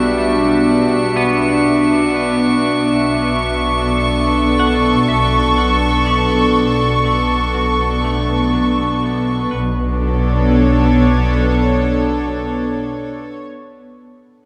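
Soft-attack, sul tasto string chords open this melancholic, reflective ambient excerpt in B minor at 61 BPM, up front over a rich bowed double bass section fading in on a low B, while a bright, clean semi-hollow electric guitar picks arpeggios in the background with vibrato and tape echo as it fades out, a glassy sine texture of drifting overtones with chorus floats high until 9.5 seconds, a very quiet, tense sawtooth drone with phaser enters at 1.9 seconds, and a long plate reverb bathes the echo-heavy mix as the harmony moves from Em9/B to Bm7.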